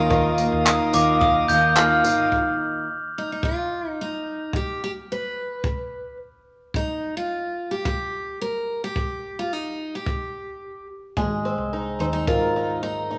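A picked steel-string acoustic guitar carries the melody across this sunny, easy-going acoustic pop excerpt, its tone bright and full-bodied and placed up front in straight 4/4 time. A dark, woody twelve-string acoustic guitar with old strings and a shimmering, octave-doubled ring accompanies it at the start, drops out at 2.9 seconds, and returns at 11.2 seconds, where the bass also comes back under an Abadd9 chord. The opening bars over Ebsus2 are the fullest, with a worn, slightly detuned upright piano in the background, a reedy tonewheel organ with key click holding chords through a slow rotary speaker, a round, hollow-body fretless bass, and a metallic, bell-like glockenspiel line struck with hard plastic mallets. After 2.3 seconds most of these parts stop, and the chords give way to a long stretch with the lead guitar and a compact, dry cocktail kit of kick drum, handclaps and tambourine, its kick punchy. 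A wet large studio reverb lends the recording a roomy finish.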